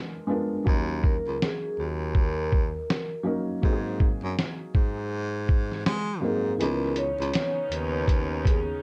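A muffled, pitched-down sampler-style drum kit sits up front with a thumpy kick and compressed snare, driving this nostalgic, melancholic lo-fi hip hop excerpt at 81 BPM in G# minor with a lazy swing. A breathy, whispered baritone saxophone carries the bass line with scooped notes and light vibrato from 0.7 seconds, while a felt-muted upright piano with audible action noise comps through cassette-tape haze and a soft-mallet vibraphone rings out the melody. At 6.6 seconds, as the kick drops out briefly, a distant, reedy string section adds bowed chords to the dark production.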